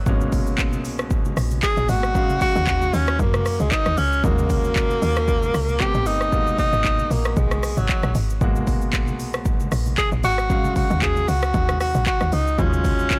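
A blown-out, overdriven recording with little reverb carries this soulful, hypnotic amapiano cut from a longer piece, moving at 115 BPM in Eb minor with a 16th-note swing over chords such as Abm9, Ebm11 and Am9. A woody, punchy log drum bass and an up-front electronic drum kit with deep kick, crisp hats, handclaps, rim click and shaker drive the groove, while a clear, polished baby grand piano plays accompaniment and very quiet, distant congas with soft hands sit far back. A barely audible downlifter opens the track until 2.2 seconds, and from 1.6 seconds a breathy tenor saxophone takes the jazz-style solo up front, with vibrato, scooped notes and digital delay.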